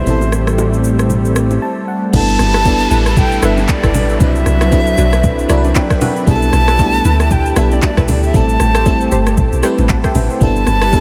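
A breathy, close-miked jazz flute with vibrato and tape echo sings over glassy FM electric piano, a lush chorused pad pumping with sidechain compression and a fat, saturated analog bass that stops at 1.6 s for a short break, in this relaxed amapiano excerpt at 116 BPM in G major with a 16th-note swing. At 2.1 s the drop arrives with a deep, round log drum bass up front and a background downlifter, very quiet punchy chord stabs follow at 2.5 s, and the soft-kicked, overdriven electronic drum kit with metallic hats, handclaps, shaker and crash rides alongside very quiet acoustic congas and bongos. Chords move through Am7, G69 and Cmaj9#11 under light reverb, and the electric piano adds fills just before the drop and again around 5.2 s.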